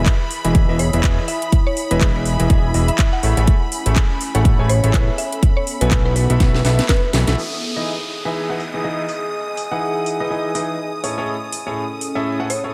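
A bright, brilliant concert grand piano riff, pumping and trailed by diffuse ambient delay, leads this joyful, feel-good piano house excerpt, carried by a fat, detuned sawtooth analog bass that stops at 7.4 seconds and a punchy, tape-toned electronic kick that drops out at 7.0 seconds, with a woody FM mallet pluck melody, biting sustained violin chords, a warbling, nostalgic tape-like pad, a house kit of handclaps, metallic hats and cracking snare, and an electronic downlifter, the whole mix soaked in dreamy hall reverb.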